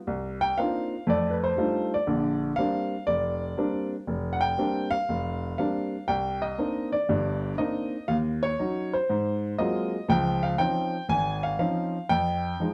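Solo jazz with a relaxed, warm mood, this short passage from a longer piece swings easily in four, carried entirely by an upright piano with a woody, natural tone placed up front. The piano moves from Cm11 through F13 to Bb69, then shifts at 6.1 seconds into a second section that runs through Cm9, Ebm7, Ab13 and Dbmaj9 before landing on Fm7. A moderate studio reverb lends the piano a gentle sense of space.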